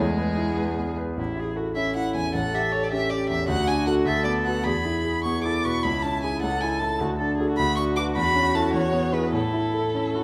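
A 6/8 at 103 BPM in dotted quarters drives this cheerful, spirited fragment of a quick classical-period movement for piano trio in A major. A focused, bowed violin with vibrato carries the melody up front, while the cello adds a rich, expressive second line with soft attacks and portamento. The concert grand supplies a clear accompaniment with deep bass and long sustain. A short opening on E gives way at 1.2 s to a new section that moves through A7, D, Bm/D and C#m before settling back on A at 9.3 s, all bathed in a moderate recital-hall reverb.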